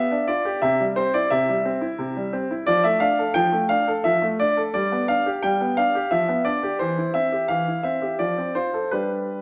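A clear, open baby grand piano plays alone from the first moment, sitting up front with a long sustain as it moves through a graceful, playful classical-period sonatina phrase in three-time, shaped with a flexible rubato. The harmony steps from G7/B to C, then through Dm/F, G and G7/F, reaching C/E and settling on F near 8.2 seconds, with the piano spanning C3 to G5. A moderate recital hall reverb surrounds the instrument in this short fragment cut from a longer piece.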